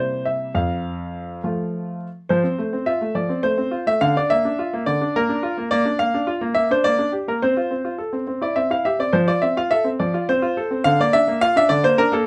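Set in a straight 6/8 at 70 dotted-quarter beats per minute, this graceful, playful classical-period sonatina excerpt in F major features a solo baby grand piano, clear and natural with short sustain and placed up front, spanning F2 to F5 in a dry, closely miked, detailed sound as harmonies move from C7 to F, through Bb/D, Gm/Bb and F/C, and back to F at 9.1 seconds before the fragment breaks off on Bb/D.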